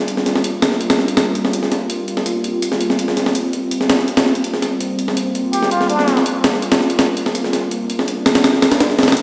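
Nostalgic and dark, this drum and bass excerpt with a jungle edge pairs a warbling, detuned pad holding a sustained Gm7 chord under chorus and its own reverb with an up-front, gritty, pitched-up breakbeat kit of hi-hat and snare, while a plunger-muted trumpet offers a brief jazz-style phrase with wah-wah, scooped notes and dub echo from 5.5 to 6.3 seconds, all set in a lush hall that sounds as if played back on a big sound system in a bare stone room.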